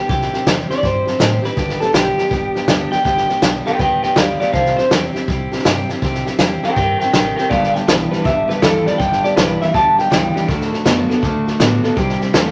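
Moderate studio reverb surrounds this rowdy, upbeat rockabilly cut at 162 BPM in a swung 4/4 in G major, where a twangy, slightly broken-up lead electric guitar through a small old amp carries the melody up front until 10.5 s over a woody, full-bodied steel-string acoustic guitar, a deep sub bass with octave in the background and a punchy vintage drum kit with a rolled-off top on hi-hat, kick and snare, while a second bright electric guitar adds a riff from 7.5 s as the chords move from C through G to D before settling back on C.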